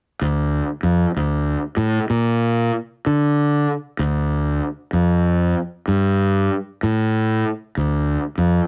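Hypnotic and brooding, this metal excerpt features a lone fingered electric bass, fuzzed, overdriven and growly, playing punchy and up front in a low register with a swung feel from 0.2 to 8.6 seconds, captured in a rough rehearsal-room recording with moderate studio ambience.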